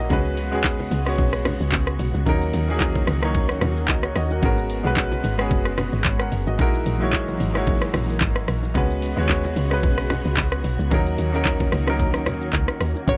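Deep and hypnotic, this amapiano excerpt rides a lightly swung groove from an up-front, tape-warm electronic drum kit of knocking kick, warm hi-hat, handclaps, rim click and shaker, with very quiet, close and dry congas and bongos and a round, dark log drum bass that hits with a fast attack and decays. A present grand piano carries the chords through C#7sus4, D#m7, G#m11 and F#13, while a silky vintage string machine sustains softly in the background with ensemble chorus. The dry mix stays intimate until a full-bodied analog pluck with chorus and a filter sweep appears only at 13.1 s, just as the excerpt cuts off.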